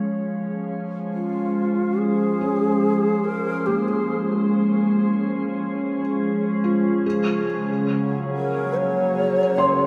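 A glassy FM pad and a felt-muted upright piano fade in together at the start of this luminous ambient excerpt, set in Db major at a slow 71 BPM in straight 4/4. The ethereal pad holds sustained chords with a slow attack and long release, thickened by ensemble chorus and its own reverb. Above it, the piano plays dark, intimate arpeggios through thick felt, its action noise audible and its tone spread by lush chorus and diffuse ambient delay. At 1.1 s a mellow bamboo shakuhachi joins, also fading in, carrying an airy, tongued melody with vibrato and its own diffuse delay. The harmony rests on Db before shifting to Gbadd9 over Db at 7.0 s. A lush hall reverb with a 2.9-second decay soaks the whole mix in a dreamy, warm haze.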